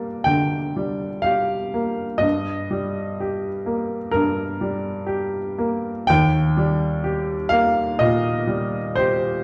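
A recital hall's lush reverb surrounds a dark, warm production, with a bright, woody upright piano sitting up front and its short-sustained notes ringing into the space. This mournful romantic nocturne for solo piano moves slowly in 4/4 at 54-65 BPM with a free, rubato feel, spanning Eb2 to G5. The melancholic harmony drifts from G minor through Eb over G to Eb, and the passage is cut from a longer piece, lasting 9.4 seconds.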